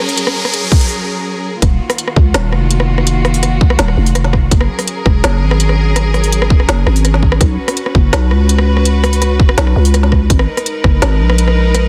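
Tense and dark, this half-time drum and bass cut from a longer piece moves at 166 BPM in 4/4, centred on Eb minor. It opens with a lush, bowed string section holding sustained chords, colored by vintage 12-bit sampler grit and sidechain pumping, while an electronic riser builds until 0.9 seconds and a brief break follows. From 0.1 seconds an overdriven drum kit of smooth hi-hats, rim clicks and a woody snare with soft clipping and studio reverb joins the strings, and a hard-clipped electronic kick drum with studio reverb enters at 0.7 seconds, sitting up front in the mix. At 1.6 seconds the drop arrives, bringing in a growling, buzzy 808-style bass with a fast attack and decaying notes, sitting up front and reaching down to Eb1. The harmony moves from Gb through Ebm, Gb, Bsus2 and Abm, and the dense, heavily limited modern master gives the whole piece a digital ambience.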